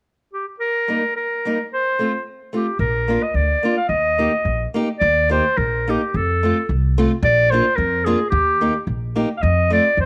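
Alpine folk in a bouncy, festive dance-band spirit, this brief fragment of a longer piece moves in a loose, rubato two-beat feel. A bright, vintage-toned clarinet carries the classical-style solo melody up front from 0.3 seconds, joined at 0.9 seconds by a boxy, fingerpicked parlour steel-string guitar with fresh strings. A woody pizzicato upright bass enters at 2.8 seconds, all three set close in a light, small-room reverb.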